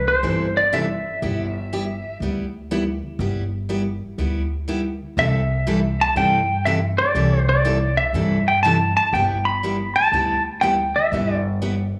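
A swung 4/4 groove at 121 BPM drives this cheerful western swing country excerpt in G major, with a woody, thumpy upright bass holding down the low end throughout and a full-bodied picked acoustic guitar comping from 0.2 seconds, its sound touched by slapback echo. A twangy, compressed lap steel guitar carries the slide melody in bursts, playing briefly at the start before returning at 5.2 seconds, also with slapback echo, over chords moving between C6 and G6. The whole performance has the feel of a live club gig heard through the venue's PA, with light reverb and a small-room ambience.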